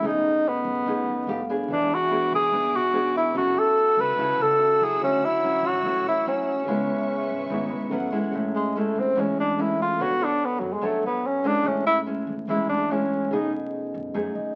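A breathy, subtoned tenor saxophone sings a romantic bossa nova melody up front at 145 BPM in A major, scooping its notes with light vibrato over fingerpicked nylon-string guitar, a mellow tine electric piano and a woody pizzicato upright bass in the background, while soft-attack bowed strings hold sul tasto chords from 1.7 to 8.3 seconds, the piano adds a fill just before the sax takes its solo at 8.3 seconds and another near the end, and a wet club reverb and the crackle of a very old 78 rpm record give this sophisticated excerpt a vintage glow.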